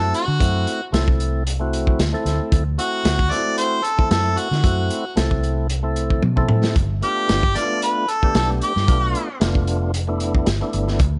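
Light reverb and a small-room ambience give this short cut from a longer soul blues piece a close, intimate sound with a softened high end. At 113 BPM in 4/4, with a straight-eighth feel and a slight swing on the sixteenths, the mood is soulful and rollicking. A clear, punchy harmonica with light vibrato and a touch of overdrive carries the melody up front until 9.4 seconds. Beneath it, a percussive tonewheel organ with key click and a slowly turning rotary speaker supplies full-bodied accompaniment, while a vintage fingered electric bass sits low, foam-muted and round. A gritty, saturated breakbeat kit with a tight kick and medium-tuned snare drives the groove and adds a fill at 6.2 seconds, as the harmony moves from D7 to G7 at 6.8 seconds.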